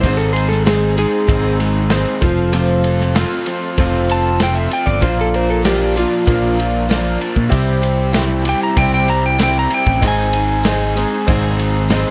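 Folk rock with a heartland rock lean, this 12-second excerpt moves at 96 BPM in a straight 4/4 and carries a nostalgic, warm mood over chords of Ab, F, Bb and C. A dark, slightly broken-up electric slide guitar takes the lead with a compressed solo from the start to 11.3 seconds, sitting up front alongside a round, punchy fingered electric bass. Beneath them, a woody picked acoustic archtop guitar with old strings and a double-tracked, overdriven garage guitar riff fill the middle, while a bright concert grand piano with audible action noise and long sustain stays in the background. A lush, bowed symphonic string section holds very quiet sustained chords, and an airy country drum kit with a punchy kick, medium-tuned snare and ride cymbal keeps time, joined by a jingly tambourine at 5.6 seconds. The slide guitar, piano and archtop share a plate reverb, and the whole recording has the worn, warbling pitch drift of old cassette tape.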